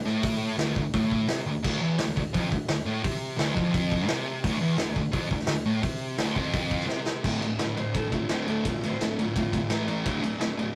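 Menacing and swaggering, this short garage rock fragment is cut from a longer piece. A thick, double-tracked fuzz guitar sits up front, its picked, distorted riff growling low. A vintage acoustic drum kit drives it in straight 4/4, with a tight kick, a medium-tuned snare, hi-hat, ride and crash, all heard through gritty saturation with dark cymbals and a rolled-off top. A drum fill at 6.9 seconds leads into a new section. There, a clean lap steel guitar, dark in tone and played with fingerpicks and slide, adds a brief melody from 7.8 seconds. The whole take has the rough feel of a rehearsal room, with light reverb and tube saturation.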